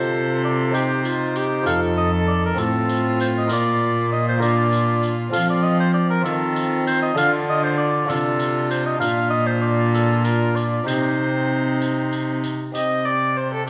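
Solemn and rustic, this renaissance-style consort dance moves at 65 BPM in a straight 6/8, set in C dorian and tuned slightly high at A4 = 441 Hz. A clear, close-miked oboe carries the melody between A4 and G5, while a nasal, gut-strung viola, played by one bowed player, traces a second line. A rich, up-front cello anchors the bass with a reedy period tone, and a solo trombone with light vibrato fills out the accompaniment alongside a delicate, fingerpicked lute whose double gut strings sit in the background. A jingly, close tambourine joins at 0.7 seconds. The harmony moves from C minor through F, B-flat and D minor before returning to C minor, all heard in a moderate recital-hall reverb, and the passage is cut from a longer piece.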